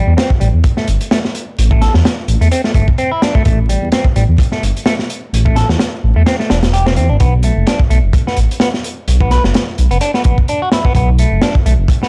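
Gritty, raw breakbeat at 128 BPM with a swung 16th-note feel in A dorian, this short cut from a longer piece sets a semi-hollow electric guitar riff, its fingered hollow-body tone colored by overdrive and delay, low in the mix against a deep, rumbling detuned sawtooth bass that sits up front. Crunchy acoustic breakbeat drums, with a high-tuned snare, tight kick and rolled-off top, push forward too. The kick drops out from 6.3 to 7.2 seconds, and as it returns the harmony moves from Am7 to a thirdless B7. A small-room ambience and vinyl crackle give the production a dark, warm character.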